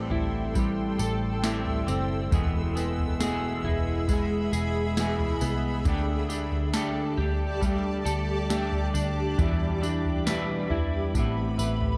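Ethereal and melancholic, this dream pop passage drifts at 68 BPM in a straight 4/4, cut from a longer piece and moving through Am7, E, Dsus4 and Em7 before settling on Amadd9 at 11.1 seconds. A clean electric guitar sits up front with compressed, picked arpeggios, colored by analog chorus and digital delay, while a hollow-bodied semi-hollow electric guitar fingers its accompaniment beneath, shimmering with harmonic tremolo and subtle chorus. Above them, a granular cloud pad holds blurred, detuned chords with a slow attack and long release, its evolving haze bathed in its own built-in reverb. A foam-muted vintage electric bass supplies round, dark low notes, and a soft vintage rhythm box enters at 0.1 seconds with a deep kick, crisp snare, tambourine and toms, overdriven and re-recorded in a large room. The production is dark and warm with light reverb, giving the whole passage a hazy, intimate glow.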